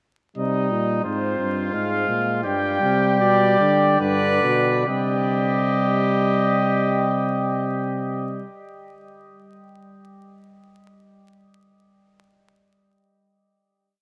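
At 0.4 s four solo brass voices enter together in a solemn yet driving classical canzona in C minor and 3/4, each carrying its own line of imitative counterpoint. The melody sits on a warm trumpet with a soft attack, while a clear trumpet sings the second line just beneath it and stands up front. A distant euphonium fills the middle as accompaniment, and a roomy bass trombone, also up front, anchors the bass. The tempo falls between 66 and 90 BPM and slows steadily through the opening exposition, as the harmony moves from C minor through F minor over A-flat to G. At 4.9 s the ensemble settles onto a final C minor chord, which the players hold until about 8.5 s. A vast, echoing cathedral reverb and a vinyl crackle surround the whole performance, so the chord keeps ringing after the players stop.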